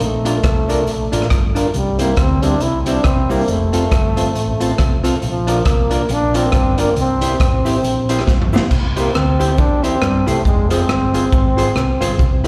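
Ska at 138 BPM with swung eighths in C mixolydian, bouncy and cheerful, heard as a live gig through the venue's PA with recital-hall reverb and cut from a longer piece. A breathy, whispered trombone carries the melody up front with light vibrato, tape echo and slapback, over a round hollow-body bass, a gritty, saturated garage drum kit with dark cymbals and a punchy kick, and a very quiet, grainy cabasa. A clean hollow-body jazz guitar with slapback and mellow tonewheel organ stabs through a slow rotary speaker come in at 0.2 seconds, and a drum fill at 8.3 seconds leads into a closing passage that turns to an Fm chord.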